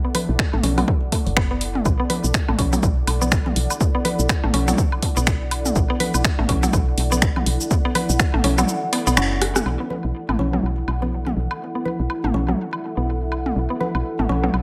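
A woody, round FM bass sits up front in this hypnotic, cool slice of minimal techno, pumping against the sidechain under a swung 16th-note groove. A bright, mallet-like synth pluck carries the riff through chorus, cassette-tape grit, tape echo and its own sidechain pumping, with a filter sweep on it through the opening stretch. Alongside it, a deep, moody ambient pad of detuned, wave-folded tones sustains with chorus and built-in reverb, breathing with the same pumping. A punchy, tape-warmed analog drum machine of cabasa, finger snaps, hi-hat and rim click is joined by a separate electronic kick. Overdriven, delayed electronic congas, woodblock and toms run throughout. The kick stops at 8.3 seconds, a drum fill lands at 9.4 seconds, and the drum machine falls away at 9.6 seconds, leaving bass, pluck, pad and percussion to carry the closing section in a lightly reverberant space.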